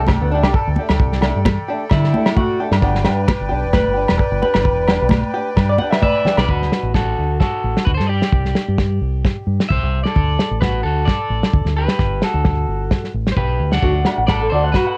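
A sunny highlife guitar band groove opens at 131 BPM in 4/4, with a bright, twangy electric guitar through a small old amp playing picked arpeggios through analog delay. Around it sit fingerpicked flamenco guitar accompaniment, boxy with audible finger squeak, and sustained accordion chords, reedy and sweet with light tremolo tuning. A round, dark fingered electric bass and a dry soul drum kit with a tight kick and rolled-off top sit up front, while ringing agogo bells and close, high-tuned congas struck with hard hands fill out the percussion. Just before a drum fill at 6.3 seconds, a twangy electric guitar at the edge of break-up, carrying a cassette tape colour, enters to take the melody into the second section, as the congas, accordion, flamenco guitar, arpeggiated guitar and agogo bells drop away. The harmony moves through D, Csus2 and Gadd9 in a lightly swung D mixolydian feel. The flamenco guitar, the arpeggiated guitar and the agogo bells return briefly near the close of this short home-cassette recording, which carries little reverb.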